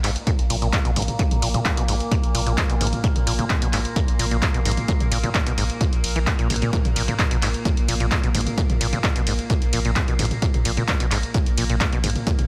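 Lightly reverberant and hard-hitting, this fragment of a longer driving, industrial peak-time techno track runs in a straight 4/4, with a punchy electronic kick entering at 0.3 s to join an up-front analog drum machine of handclaps, hi-hat, ride cymbal and toms, both re-recorded in a small room. A squelchy, resonant sawtooth acid bass riff with tape echo and sidechain pumping rides over a deep, thick saturated sub bass that sits in the background with overdrive and a low-pass filter. Above them, a detuned drone with moving overtones blooms slowly through chorus and built-in reverb, also pumping to the sidechain.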